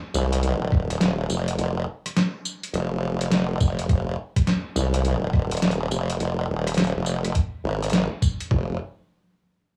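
This playful, funky glitch hop piece, cut from a longer work, sits in a drop until 8.5 seconds, swung on the sixteenths. An up-front formant-sweep wobble bass, wobbling and sustained with a sawtooth-and-sine bite, chorus and compression, enters at 0.1 seconds alongside a pitched-down, sampler-style boom bap kit of hi-hat, rim click, medium-tuned snare and tambourine. A thumpy kick and toms join at 0.7 seconds, all in a dry, gritty, tape-tinged sound with small-room ambience.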